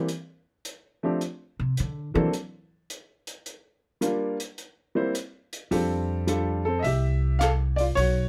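Lightly reverberant and close, this short cut from a longer jazz piano trio piece has a sophisticated, playful swing in F major at 107 BPM. A warm, boxy upright piano with short sustain carries the melody up front over chords such as Cadd9, Gm7 and a closing F6/9, while a dark, smooth cocktail kit keeps a soft hi-hat and rim click. A growly, woody pizzicato upright bass steps forward briefly at 1.6 seconds and returns at 5.7 seconds for the final stretch.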